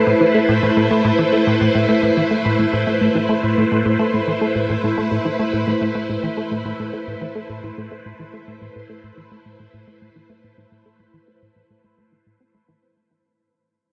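Cosmic and hypnotic, this cut from a longer piece of ambient, sequencer-driven space music moves at 107 BPM in A minor, resting on a single A minor chord. A swirling, vintage string machine, bright and warbling through ensemble chorus and phaser, holds sustained chords up front, while a punchy, funky analog bass plays a plucky sawtooth-and-pulse riff with a fast attack, a moving notch, a filter sweep, lush chorus and delay. Both sit in a huge, wet reverb with a 7.9-second tail, and the passage fades out across its 12.8 seconds.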